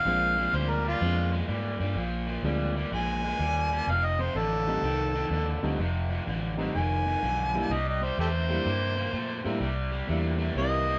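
A swung 4/4 shuffle at 126 BPM drives this soulful, laid-back electric blues, cut from a longer piece and moving through Bb7, F7 and C7. Up front, a gritty, amplified harmonica carries a jazz-style solo with vibrato, tongue slaps and scooped notes, while an overdriven semi-hollow guitar picks a low riff through spring reverb. A dark, round, punchy muted bass and a natural-sounding grand piano fill out the band, heard playing live together in one lightly reverberant room.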